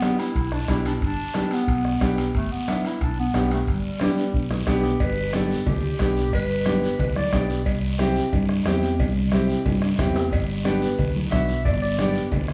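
A lush studio reverb surrounds this festive cumbia excerpt, which sounds like a band playing live together in one room. At a brisk 180 BPM in straight 4/4 and G major, a mellow, smooth-topped clarinet carries the melody up front in a classical style, while a brilliant, woody upright piano, slightly detuned, supplies the accompaniment. A soft-beater bombo, ringing congas struck with hard hands, metal-shell timbales and cowbell, and a raspy guiro keep the percussion going throughout. A fingered electric bass enters at 0.4 seconds with a growly, amped tone. During a drum fill, a second clarinet with a clear sound, light vibrato and soft attack takes a jazz-style solo line from 4.7 seconds and returns near the end. The harmony rests on G, moves to C, then settles back on G, keeping the mood sunny.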